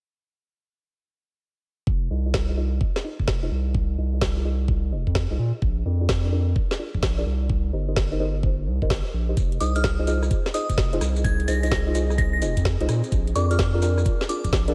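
UK garage two-step excerpt at 128 BPM in F dorian, soulful and skippy with a swung 16th feel, where a thick saturated sub bass and knocking kick enter at 1.9 seconds, joined by a woody-snared, metallic-hatted garage kit and dark, warbling chord stabs under a filter sweep, moving through Fm7, Bb7 and Cm7, before a grainy shekere, a crystalline FM bell melody with chorus, phaser and diffuse delay, and a very quiet ethereal pad arrive in the second half in light digital ambience.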